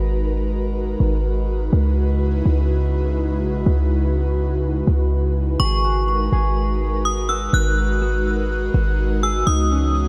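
A lightly reverberant, spacious mix frames this ethereal hip hop excerpt in G# minor at 124 BPM with a half-time feel. A breathy, detuned pad with chorus holds sustained chords over a deep, boomy 808-style bass sitting up front, moving between G#m7 and C#m11. At 5.6 seconds a bright, inharmonic FM bell carries the melody high above, ringing through chorus and tape echo, while a dark, clean, fingered electric guitar adds arpeggios through analog chorus and tape echo.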